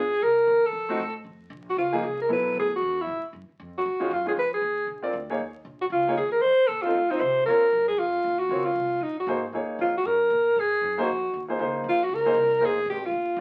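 Cool and smoky, this excerpt of small-group jazz swings at a fast 232 BPM in 4/4 and sits in B-flat minor. A breathy alto saxophone carries the melody up front as the soloist, its subtone, scooped notes, vibrato and smooth top giving it an intimate jazz voice. A pizzicato upright bass with steel strings runs underneath from the start, woody and growly but set well back in the mix. A natural-sounding baby grand piano joins at 0.9 seconds with mellow accompaniment through changes that move from Bbm past Abm6 and Bb7 before settling toward Ebm7, Ab7 and Dbmaj7 near 11.6 seconds. Studio reverb and the crackle of a very old 78 rpm record give the whole performance a dusty, vintage sheen.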